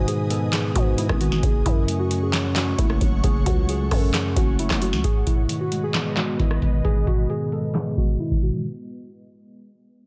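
A dense, heavily limited modern master with digital ambience and a dark low-pass tint frames this short, melancholic trap cut from a longer piece. It moves at 133 BPM in a half-time 4/4 feel, in G# phrygian, with the chords moving from G#m to F#m and back to G#m. An up-front, tape-warm analog drum machine hits hard with a deep kick, crisp snare, handclaps, rim clicks and metallic hi-hats, the snare, claps and hats carrying a short room sound. A growling, buzzy 808-style bass anchors the low end until 5.0 seconds, when a filter sweep runs through the closing section. Over this, muted, felt-like synth keys play an intimate, soft melody colored by chorus and tape echo, while a clean tine electric piano, heard as if through built-in speakers, supplies mellow accompaniment. An ethereal, airy pad of detuned unison voices sustains chords around them, glowing with ensemble chorus and its own reverb.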